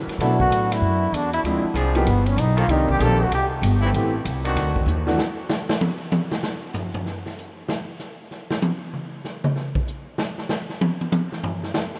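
Joyful and swinging, this big band jazz excerpt at 192 BPM opens with a punchy, forceful, bright trombone solo carrying light vibrato over a growly, woody pizzicato upright bass, a warm grand piano and a trombone section holding sustained chords in the background, all set in a vast, echoing space, before a drum fill at 4.9 seconds hands over to a drum solo running from 5.2 to 12.0 seconds on a roomy kit with a boomy kick.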